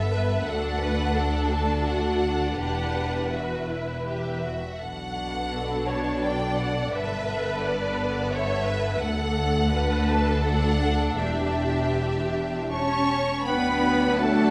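Violins carry a focused, vibrato-rich melody high above a distant second violin line, supported by expressive violas with portamento, woody double basses and smooth cellos. This longing, bittersweet cinematic orchestral excerpt moves in a rubato 3/4 at roughly 77-87 BPM over chords of D, Em7, Bm7 and Gadd9. A pure flute enters in the background at 12.7 s, and at 13.5 s a clear oboe, a very quiet, dark clarinet and a mellow French horn section arrive, all set in a moderate scoring stage reverb.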